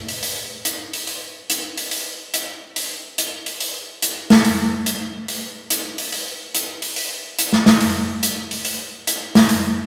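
Jazz at 142 BPM in 4/4 with a 67% swing on the eighths, this short excerpt carries a spiritual, intense mood. A swinging big-band drum kit plays from 0.1 to 9.6 seconds, its hi-hat and medium-tuned snare sitting up front with an airy, polished acoustic sound and a hall-like character. The band plays live in one room, and light reverb rounds out the space.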